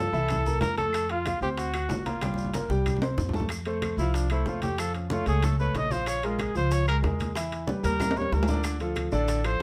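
An up-front trumpet with vibrato and scooped notes carries the melody of this sunny, sophisticated Afro-Cuban jazz excerpt in F major at a brisk 187 BPM, stepping into a smooth-topped solo at 3.5 seconds. A natural-sounding concert grand with deep bass supplies the harmony alongside a woody, warm pizzicato upright bass. Bright, low-tuned congas, ringing metal-shell timbales, tight high-tuned bongos, vintage claves and grainy, distant maracas fill out the percussion, with drum fills at 2.2 and 7.8 seconds, all under light reverb.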